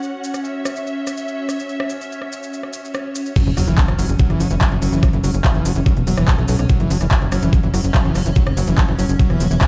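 Hypnotic and intense, this psychedelic trance excerpt at 144 BPM opens with an evolving, phased wavetable pad, grainy maracas and a lush, distant string section under a filter sweep, joined moments later by an overdriven techno drum kit, then drops at 3.4 seconds into a knocking up-front kick, a tight, punchy sequencer bass, a quiet sub drop and a squelchy, screaming acid line with distortion, chorus and delay, all in a large, reverberant room.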